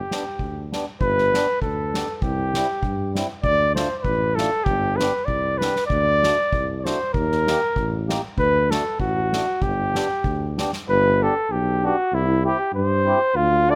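A dry sound frames this festive, bouncy alpine folk dance in G major, moving at 97 BPM in a lightly swung 2/4. A smooth-topped flugelhorn carries the melody up front in a classical style, while a reedy, round accordion fills in the accompaniment and a mellow tuba with light vibrato holds down the bass. A polished soft-mallet drum kit with dark cymbals and a punchy kick drives the dance until it drops out at 10.9 s, leaving the brass and accordion to finish this fragment of a longer piece.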